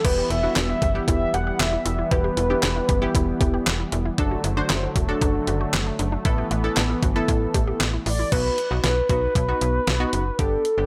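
A nocturnal, cool synth-pop groove in E minor at 116 BPM opens with a thumpy, up-front 12-bit drum machine with a fat snare, handclaps and crash, a snappy, metallic FM slap bass, a punchy sawtooth polysynth comp with chorus, a brassy, detuned analog pad and a lush unison pluck set back in the mix with flanger and delay. Over this, a round, horn-like synth lead with vibrato, chorus and delay sings a melody that breaks off at 3.7 seconds as the chords move from Em through D to Asus2. The lead returns at 8.1 seconds, and at 8.3 seconds the pad and pluck drop out, leaving drums, bass, comp and lead on a B chord in light reverb before this cut from a longer piece ends.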